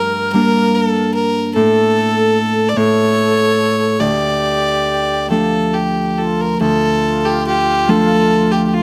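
A biting, nasal fiddle carries the melody up front in this haunting, longing Celtic slow air in a free, rubato 6/8, over ringing fingerpicked harp accompaniment, while a wooden baroque flute with vibrato adds a distant second line in the background, all set in a moderate recital-hall reverb and captured by close, detailed microphones in a fragment cut from a longer piece.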